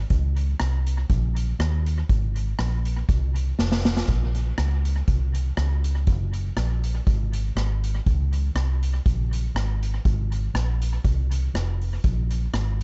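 Mischievous and driving, this ska excerpt moves at 121 BPM in 4/4 with a light swing on the eighths, tuned slightly flat to A4 = 438 Hz. A vintage muted, fingered electric bass sits up front with a round, punchy, foam-muted tone, holding the low end between F1 and Eb2, while an acoustic street-band drum kit of hi-hat, boomy kick, rim click and medium-tuned snare carries a dub echo and an airy big-room sound. The kit breaks into a short fill from 3.6 to 4.1 seconds, and the dry, dark, warm production keeps everything below 7.9 kHz.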